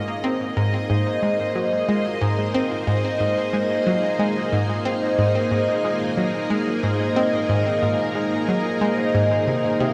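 A round, nasal analog pluck riff sits up front in this cosmic, expansive piece of sequencer-driven space music, its detuned sawtooth tone carrying a noise layer, a fast attack and short decay, dressed in chorus, phaser, delay and a cassette-tape coloring. Alongside it, also up front, a lush, vintage string machine holds full-ensemble chords with a sub octave and slow attack, fading in across the whole 9.9 seconds under its ensemble chorus. A fingerpicked concert harp rings out arpeggios in its higher register, its acoustic, warm tone trailed by delay. In the background, a resonant, bubbling texture of random filter steps sustains a single high note with a long release, chorus and its own reverb. The whole excerpt is bathed in a huge ambient reverb that places it in a vast, echoing space, and it is cut from a longer piece.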